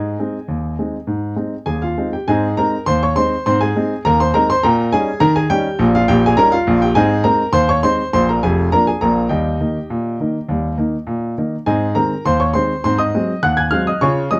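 A clear, intimate grand piano plays jaunty, cheerful ragtime alone in Ab major at 102 BPM in a straight 2/4, its audible action noise sitting up front in a moderate club reverb with a dark production, in this short cut from a longer piece whose harmony moves through Eb7, Bb7 and back home to Ab, ending on Ab7 at 12.9 seconds.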